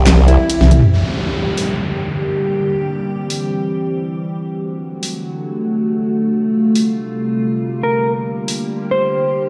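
Heavy wobble dubstep at 139 BPM in a half-time 4/4 feel, this menacing excerpt sits in G dorian and moves through C, Gm, C, D, Fadd9 and back to Gm. An evolving wavetable pad holds sustained chords throughout, its detuned unison voices morphing under chorus and a slow attack with long release. A dark, clean electric guitar carries the melody with delay, heard briefly at the start and again from 7.8 seconds. The electronic, layered drum kit runs from 0.1 to 8.6 seconds with a huge snare, bright hats, handclaps, ride cymbal and toms, and a short drum fill at 0.6 seconds coincides with a brief, sustained burst of saturated, metallic FM wobble bass, the loudest element. A downlifter sweeps through from 0.9 to 4.4 seconds, and the whole mix is bathed in a lush hall reverb that gives it the boom of a big sound system in a bare room.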